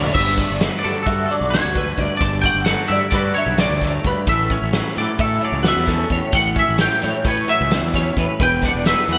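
In bright 1980s-style digital production with a lush hall reverb, this intricate math rock and midwest emo excerpt moves at 262 BPM in 9/8: a loose indie drum kit with a fat snare, punchy kick, dark cymbals and gated reverb opens on a fill at 0.0 s, a round, overdriven fuzz bass sits low, a compressed twelve-string electric guitar picks arpeggios through ensemble chorus and digital delay, a twangy electric guitar with analog chorus plays accompaniment in the background, and a clean, picked twangy lead guitar carries the melody from 0.1 s over Gmaj9, A13 and Em9.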